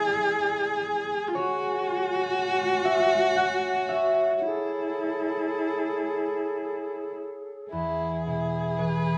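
Set in a wet studio reverb with a short tail, this live ensemble plays together in one room on a nostalgic, wistful fragment of a longer Celtic slow air, in three with a rubato feel. A ringing, fingerpicked concert harp carries the accompaniment throughout and holds the solo spotlight until 7.7 seconds, moving from E7 through F#sus2 to Amaj7. Beside it, a close, up-front solo cello bows a dark, woody second line with vibrato and sul tasto tone. A flute section adds airy, crisp-attacked sustained chords with vibrato. At 7.7 seconds the flutes stop and a bowed fiddle, distant yet up front, enters on the melody with light vibrato and sul tasto shading as the harmony settles on E, running to the end at 9.2 seconds.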